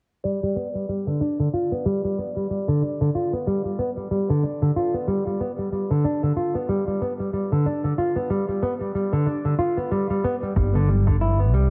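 A dark, fingerpicked nylon-string guitar plays arpeggios up front through a filter sweep and delay in this peaceful organic downtempo excerpt at 93 BPM in G mixolydian, with a ringing, meditative bronze singing bowl in the background and a very quiet, tape-warm cabasa from the start, before a growly, round fretless electric bass with sidechain pumping, a punchy electronic kick and distant bongos and congas arrive at 10.6 s as the harmony moves from G to C/G, set in a lush hall reverb.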